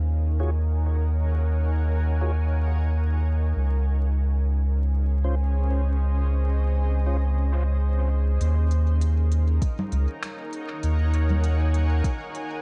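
Spacious and meditative, this ambient dub excerpt moves at 99 BPM in 4/4 with a light sixteenth-note swing in Eb dorian, a granular cloud pad holding blurred, evolving chords over a deep, round sub bass, while a mellow, dark tonewheel organ sits in the background with stabs through chorus vibrato, slow rotary speaker, filtering and dub echo until 7.2 seconds. At 8.4 seconds an organic electronic drum kit of congas, finger snaps and crisp, filtered hi-hats enters with studio reverb and dub echo, joined at 9.6 seconds by a soft, up-front electronic kick. The echo-heavy mix carries vinyl crackle and a dulled top end, with chords moving from Ebm11 to Dbmaj7 and back.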